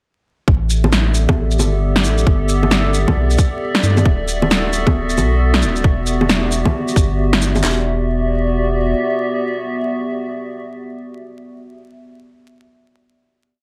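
A muffled two-step kick, snare and handclap from a tight garage drum kit open this wistful future garage piece at 134 BPM in E minor, joined at once by a deep, round sub bass playing long gliding notes with sidechain pumping. From 0.7 seconds a layered electronic part of shaker, low bongo and a second cracking snare adds a skittering, shuffled beat, its 16ths swung at 63%, and both percussion layers carry a tape-warm character, as if re-recorded in a large room. A warbling, nostalgic pad with a detuned, vintage lo-fi tone sustains dark chords through chorus and its own reverb, pumping with sidechain compression, moving from G69 to D69 and then Em9. The percussion falls away by 7.8 seconds and the bass at 8.9, leaving the pad to hold the final chord alone until 11.4 seconds. Vinyl crackle, light reverb and a digital ambience give the whole a ghostly, faded sheen.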